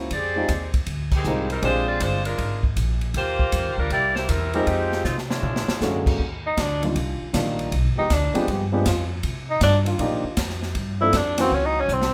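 A woody, thumpy upright bass and a polished grand piano open this brassy, swinging big-band jazz excerpt, joined almost at once by a bright, tight saxophone section carrying the melody over an airy drum kit with a punchy kick, until a clear tenor saxophone takes a solo with scooped notes and light vibrato at 6.5 seconds, backed by sustained chords from a close-miked trombone section in a light reverb.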